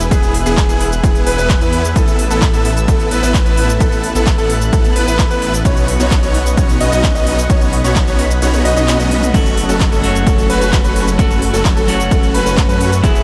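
An excerpt of euphoric, triumphant festival progressive house at 130 BPM opens on a lush, detuned unison pad sitting in the background with chorus and a thick, menacing saw bass, both pumping to the sidechain, along with an overdriven big-room dance kit with crisp hats, cabasa, handclaps, toms and crash. Almost at once a punchy, overdriven electronic kick lands up front, joined by huge, detuned supersaw chords carrying the riff and a brilliant concert grand playing arpeggios, both trailed by tape echo. The harmony moves from E to Asus2 and Badd9 before settling on F#m at 9.3 seconds. Just before that, the kick drops out from 8.4 seconds for a drum fill. At 9.3 seconds a dark, clean, picked electric guitar enters as accompaniment, also echoed and pumping. The whole mix is dreamy and soaked in a vast ambient reverb, giving the big-room sound a hazy glow.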